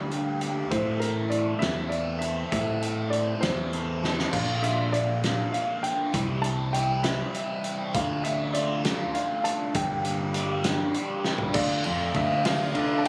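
Captured on a phone in a small room with light club reverb, this moody, bittersweet indie rock excerpt in D minor moves at 66 BPM in a straight 6/8. A bright, double-tracked overdriven guitar riff with phaser sits up front beside a growling picked bass with its own overdrive and a saturated, gritty drum kit with dark cymbals and a tight kick. Above them, a woody, slightly detuned upright piano carries the melody with audible action noise, while drum fills at 4.0 and 11.2 seconds lead into new sections over chords moving from Gm and Am through Bb, C and Dm.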